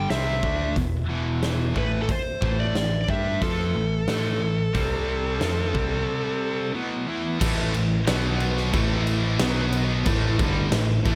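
Light reverb and a small-room ambience surround this heavy, aggressive hard rock passage in A minor at 90 BPM, cut from a longer piece, with a huge arena drum kit up front whose punchy kick, fat snare and bright cymbals enter at 0.1 seconds beside an amped, picked electric bass. An up-front high-gain lead guitar carries the distorted melody until 6.7 seconds, over a scooped high-gain guitar riff, an overdriven guitar riff with harmonic tremolo in the background, and a very quiet, flute-like tonewheel organ holding soft chords through a rotary speaker. At 7.4 seconds a second, double-tracked scooped guitar joins the riffing in the background as the chords move between A5 and B5.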